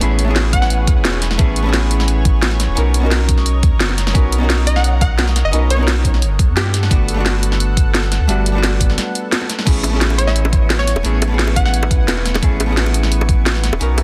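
Densely limited and lightly reverberant, this uplifting, dreamy liquid drum and bass excerpt sets a deep, round sub bass and a knocking electronic kick under an up-front kit of cracking snare, bright hats and crash, while a dark, clean archtop guitar with dub echo and a lush, warbling chorused pad carry the chords, a glassy wavetable pluck with digital delay adds brief melodic phrases, a barely audible downlifter sits under the first 1.4 seconds, and tight, high-tuned bongos join in the background at 9.8 seconds, just after a short break.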